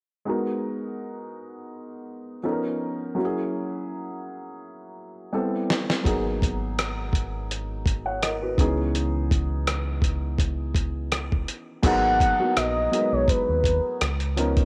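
A gliding sawtooth lead with chorus, slapback echo and vibrato arrives at 11.9 s to carry a short, sustained melody over this soulful, late-night neo-soul R&B excerpt in G# minor at 83 BPM, with a light 16th-note swing. An intimate, woody upright piano with audible action noise lays down extended chords from the start. A gritty, compressed sampler-style kit with a thumpy kick and fat snare joins at 5.7 s, and a dark, round fingered electric bass follows at 6.1 s, all set in a light digital ambience.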